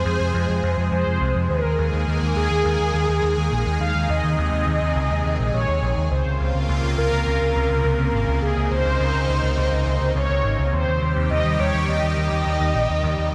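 A bright, 1980s-style digital production sits in a lush hall reverb, giving this short synthwave excerpt a polished, spacious sheen. At 104 BPM in a straight 4/4, the mood is driving yet nostalgic, moving through Fm, Ebsus4, Bbmadd9 and Cm over about 13 seconds. A mellow synth brass carries the melody from the start, its detuned sawtooth tone brassy, full-bodied and dark, with vibrato and a filter sweep, dressed in chorus, delay and a touch of vintage 12-bit sampler grit. Beneath it, a thick, detuned unison pad holds sustained chords with a slow attack, its sheen shimmering through chorus and phaser. A picked electric bass enters at 0.1 seconds, round and amped, sitting up front as the loudest part.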